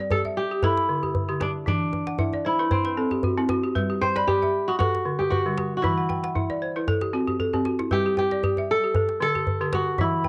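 A bright, ringing kora carries the fingerpicked melody up front with a faint cassette-tape grain, while a woody, round balafon struck with hard rubber mallets spins arpeggios alongside it and a tight, cracking djembe keeps time close and dry. This hypnotic, flowing West African string and xylophone music moves at 115 BPM in G major with a gentle swing, cycling through G, D and E minor with brief stretches that rest outside any defined chord. The balafon breaks into fills around 2.1 and 6.0 seconds, joined by a djembe fill at 7.3 seconds, all in a small, homey room cut from a longer piece.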